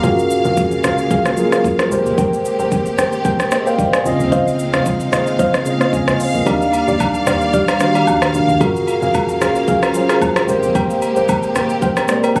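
A lightly swung 112 BPM amapiano groove in 4/4 rides on a produced deep house drum kit with a deep kick, smooth hi-hats, rim clicks and shaker, while a round, dark, percussive log drum bass, a mellow tine electric piano up front, a lush, woody bowed string section with sidechain pumping, and soft, nasal chord stabs with chorus and digital delay drift through relaxed Gbmaj9, Abmaj9, Dbmaj9 and Ebmaj9 changes, with agogo bells and woodblock joining at 6.5 seconds in this cut from a longer piece, all heard as if captured on a phone in a room with club reverb.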